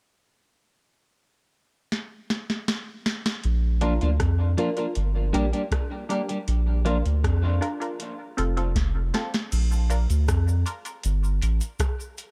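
A round, deep sub bass sits up front in this hazy, spacious dub reggae excerpt, arriving at 3.4 seconds over a soft vintage rhythm box with a deep kick, crisp snare and metallic hats that enters with a drum fill. A clean, picked electric guitar and a muted, detuned chord stab colored by a phaser both come in at 3.8 seconds and trail off into tape echo, with a filter sweep running from 6.5 seconds onward. Near the end a small-room cabasa joins in the background, all within a dry, echo-heavy mix.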